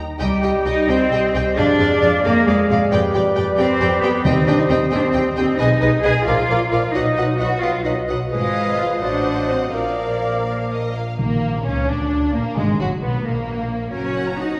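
A symphony orchestra, all but the timpani, opens together in a lively, graceful C minor movement in a flexible 6/8 at 88 BPM: a focused, vibrato-rich violin section carries the melody over a lush second violin section, while a pure flute, a dark cor anglais, a present clarinet and a mellow bassoon add lines in the background beneath soft-edged horn chords and a faint, portamento-laden viola section. Up-front cellos and an intense double bass section anchor the bass, and round, soft-mallet timpani tap in briefly at 4.2 seconds. The winds and horns fall away near 11 seconds, leaving strings and timpani to turn toward B-flat minor and G-flat harmonies in a roomy concert hall reverb, heard from further back in this excerpt.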